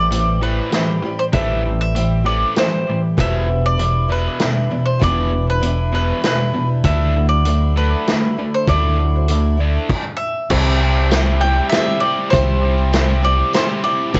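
This dry home cassette recording has its top end shaved off above 7.9 kHz, lending it a dusky, tape-worn character. It is folk rock and heartland rock in 3/4 with a straight feel, jangly and hopeful, and is cut from a longer piece. A bright, double-strung bowl-back mandolin carries the melody through an analog delay. Alongside it sit a boxy, shimmering, octave-doubled twelve-string acoustic guitar and a double-tracked overdriven electric guitar riff. A deep, round dub bass with transformer saturation sits up front, and a vintage kit with dark cymbals, a medium-tuned snare and a tight kick comes in at 0.1 s. The chords move from Am7 through Em7 to Dadd9 before a brief stop at 9.9 s, then at 10.5 s the harmony lands on C and a very quiet, jingly tambourine joins.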